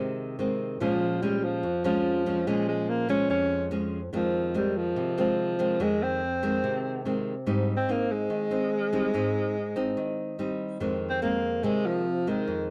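This bossa nova in F minor moves at 144 BPM in a straight 4/4, with a melancholic, intimate mood in a short cut from a longer piece. A fingerpicked nylon-string guitar opens at 0.0 seconds with a rootless Fm7 and carries the accompaniment with a full-bodied, classical tone. The breathy alto saxophone enters at 0.8 seconds to sing the melody in a jazz style, its vibrato and scooped notes carried by plate reverb that lends it a distant, roomy feel. The harmony moves from Bbm7 back to Fm7, then to Abmaj7 before returning to Fm7 near 10.8 seconds. Light reverb and a dark, warm production frame both instruments, which sit up front.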